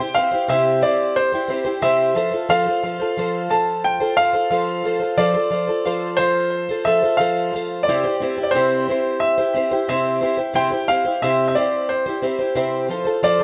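Rock in C major at 89 BPM, this short excerpt carries a nostalgic, open-road mood over a straight 4/4 pulse. A bright grand piano sits up front and carries the melody between C5 and A5, its brilliant, natural tone colored by tape echo. Beneath it, a picked, plugged-in twelve-string acoustic guitar supplies the accompaniment from C3 to C5, sounding dark and woody with the shimmering, octave-doubled ring of old strings and a boxy, ladder-braced body. Both parts play throughout the passage, which moves from C to F at 2.2 seconds, back to C at 7.9 seconds, and returns to F just before the cut. A moderate studio reverb gives the pair a sense of shared space.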